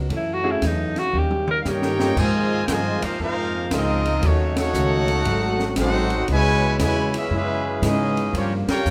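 A clear trumpet section carries the melody from 1.6 s in this energetic, brassy big band swing excerpt, after a vibrato-rich, scooping tenor saxophone solo opens over a brief, worn-sounding grand piano accompaniment and is joined by a drum fill at 1.1 s, with a bright trombone section on a second line, a mellow, bucket-muted trombone section holding very quiet, veiled chords, a woody pizzicato upright bass, a dark, clean archtop guitar and an open drum kit with dusky cymbals and a boomy kick, set in a moderate large studio reverb and punctuated by band accents at 4.5 s and 8.6 s.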